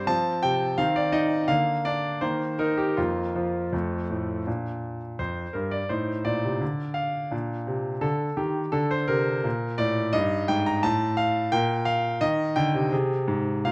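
A bright, up-front concert grand piano plays a cheerful, elegant classical-period sonatina alone at 85 BPM in 2/4 with a rubato feel, its brilliant upper notes and deep bass set in a moderate recital-hall reverb, moving from Bb major to Eb major at 10.1 seconds in this passage cut from a longer piece.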